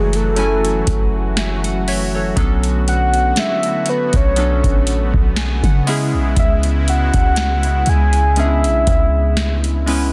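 A deep, boomy 808-style bass sits up front in this sensual, late-night contemporary R&B excerpt, alongside a booming analog drum machine with a crisp snare and metallic hats, a soft, round octave-layered synth lead that carries the melody with chorus, delay and vibrato, detuned analog keys with a filter sweep and a fill at 4.9 seconds, and a smooth sawtooth pad that holds chords under tremolo and sidechain pumping, in a dense, heavily limited and nearly dry mix.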